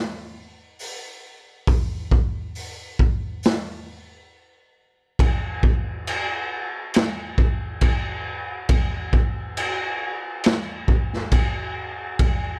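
Hypnotic and sludgy, this metal excerpt cut from a longer piece crawls at 68 BPM in a straight 4/4, as a raw garage drum kit enters at 0.8 seconds with punchy kick, medium-tuned snare, hi-hat and crash cymbal, its saturated, gritty tone, rolled-off top and pumping small-room sound placed up front in a dry mix, marking a break from 4.3 to 5.2 seconds before the second section carries on until the kit stops at 12.4 seconds.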